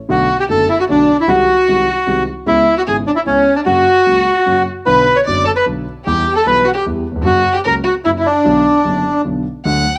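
Sultry and passionate, this tango fragment in 3/4 moves with a loose, rubato feel, cut from a longer piece. A reedy bandoneon carries the melody up front, its tone boxy and close, as if heard in a small room, until it stops at 9.2 seconds. A single bowed violin sings a warm second line with a soft attack, vibrato and expressive portamento, and it holds on until 10.0 seconds. A dark concert grand piano supplies the accompaniment, mellow and intimate, with deep bass, a smooth vintage character and audible action noise. The three instruments share a cassette-tape coloring, and the home recording sits in a wet, short studio reverb, while the chords move from Bm7 through G#7/B#, C#m7, F#, Bm and Em before returning to F# and resolving on Bm.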